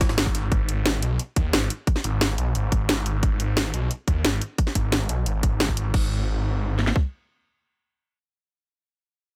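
A snarling, growling saw bass with distortion, overdrive and sidechain pumping drives this dark, aggressive technical drum and bass cut at 177 BPM in G# minor, set against two layered electronic kits, one an overdriven layer with a tight kick and cracking snare running to 7.0 seconds and the other adding crash and hi-hat until 6.0 seconds, all dry and up front.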